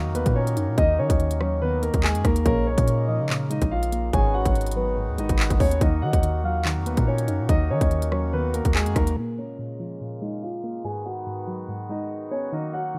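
A dry, rough home-demo sound frames this dark, menacing drill excerpt in Eb minor, moving at 143 BPM in 4/4 with a half-time feel. Up front, a concert grand piano with a deep low end carries the melody through a low-pass filter and digital delay. Beneath it, a soft, round plucked synth with a chorused, detuned edge plays accompaniment, and a reedy, nasal harmonium breathes sustained chords. A mellow, sine-like 808-style bass with long decaying notes and a tape-warm drill kit of hard-clipped kick, crisp hi-hats, handclaps and rim clicks drive the groove until 9.2 seconds. Between 0.8 and 8.3 seconds, an octave-layered synth lead with vibrato adds a second line. The chords cycle through Ebm, Bbm7 and Abm7, and a filter sweep runs over the final stretch as piano, pluck and harmonium carry on alone.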